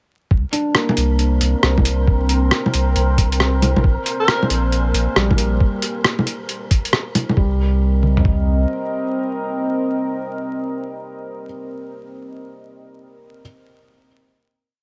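Future garage with a ghostly, nocturnal mood, set over a shuffled 4/4 groove and a bed of vinyl crackle in a light reverb. A muffled, thumpy two-step kick with mid and floor toms sits up front from 0.3 seconds, joined by a pitched-down, skittering layer of closed hi-hat, low bongo and rim click, both kits carrying a compressed, sampler-style grit as if re-recorded in a small room. A round sine sub bass plays a dub-style line under a deep, detuned sawtooth pad whose slow-attack chords are coloured by chorus and reverb, both pumping against the sidechain. A felt-muted upright piano scatters soft, intimate notes with audible action noise and tape echo, while an airy, wind-like noise layer holds a high note far in the background. A clear, distant alto saxophone with vibrato offers a brief answering phrase through tape echo, and after the drums fall away the pad and piano carry the closing chord, the piano lingering last until 13.4 seconds.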